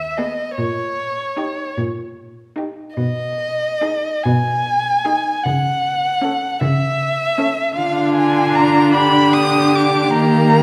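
A solo violin and cello begin together, and within 0.2 seconds a second violin and a viola join to complete this elegiac, melancholic slow movement for string quartet, heard as an excerpt from a longer piece. The pace is slow and rubato, at 50 beats per minute counted in dotted quarters within 6/8, and the tuning sits at A4 = 439 Hz. The lead violin carries the melody high in its range, up close and up front, with a warm, expressive tone, soft attacks, vibrato and graceful portamento. Beneath it the second violin holds an even, smooth inner line, the viola adds focused, distant accompaniment, and the cello anchors the bass with a rich, smooth tone and vibrato. The harmony moves from G#m through D#7/A# and A/C# before settling on Dmadd11 from 7.8 seconds until the close at 10.6 seconds, all framed by a moderate recital-hall reverb with a 1.4-second decay that suggests a church or concert hall.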